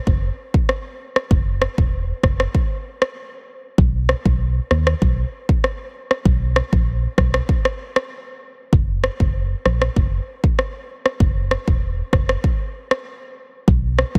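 Opening together at 0.1 seconds, a hollow, percussive organ-like FM bass with a dark, decaying tone and an electronic afro-pop drum kit built on a deep kick and rim clicks sit up front in this sunny, summery dancehall excerpt, its dry, heavily compressed radio sound shaped by multiband compression.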